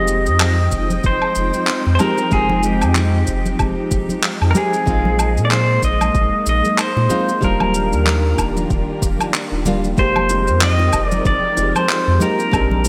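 Warm and wistful, this sunset chillout excerpt moves at 94 BPM with a swung sixteenth feel in F dorian, drifting from Fm9 through Bb9sus4 and Ebmaj9 to Fm11 at 10.0 seconds under a bright 1980s-style digital sheen and a lush hall reverb. An up-front, clean pedal steel guitar carries the melody with fingerpicks, volume swells and slide, roughened by vintage 12-bit sampler grit and digital delay, over a dark, fingerpicked nylon-string guitar with finger squeak and delay, a silky soft string machine with ensemble chorus, and a round, deep analog bass with a filter sweep. Overdriven electronic shaker, handclaps and woodblock with gated reverb enter at 0.1 seconds, close and dry congas and bongos sit in the background, and an overdriven, deep electronic kick drum joins at 0.7 seconds.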